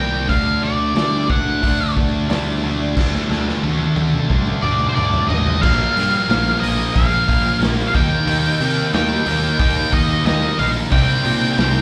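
This dark, angsty quiet-loud alternative rock passage at 90 BPM in a straight 4/4 opens on a solo from an up-front octave-fuzz lead guitar with a shadowy, distorted tone, carrying the melody over a bright, twangy twelve-string electric guitar picking clean, chorused arpeggios. Beneath them, a heavy high-gain guitar and a thick fuzz guitar grind out the riff in the background, while a fuzz-picked electric bass adds overdriven, amped weight, and a raw garage drum kit joins with a punchy kick, medium-tuned snare, hi-hat, toms and crash, its sound saturated and gritty with a rolled-off top. The twelve-string stops at 3.0 seconds as the drums take a fill, and at 5.6 seconds a double-tracked, compressed fuzz guitar thickens the riff as the harmony moves through D, D5, Bb5 and Eb. At 10.9 seconds a very faint vintage organ-like ensemble sustains a Cm7 chord beneath the band. Every guitar except the late-entering fuzz guitar carries a slapback echo, and the whole cut sounds like a live gig heard through a club's PA, with a bit of room around it.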